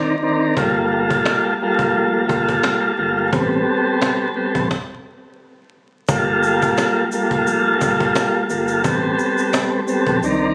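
Dark and moody, this boom-bap hip-hop excerpt, cut from a longer piece, opens with an up-front tonewheel organ, smooth with vibrato through a slow rotary speaker and a cassette-tape haze, joined by a woody, close and dry cajon with faint snares and a deep, round sub bass sitting soft in the background. A stop from 4.7 to 6.1 seconds breaks the swung groove before the second section brings in a grainy, bright tube shaker over Gm9 and Am9 chords. Light small-room ambience, vinyl crackle and a phone-in-the-room quality give the sound a lo-fi intimacy.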